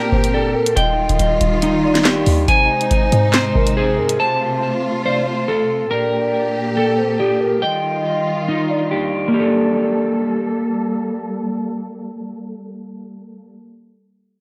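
A half-time drill groove of sharp snare, bright hats and handclaps drives the ominous, cold opening alongside a punchy, tight 808-style bass, and both drop out at 4.2 s, leaving the dark, slightly broken-up electric guitar's chorused, delayed arpeggios and the lush bowed symphonic strings' sustained chords to carry the rest of this excerpt under light reverb, joined until 10.6 s by a hollow, woody clarinet-like synth lead with warbling vibrato.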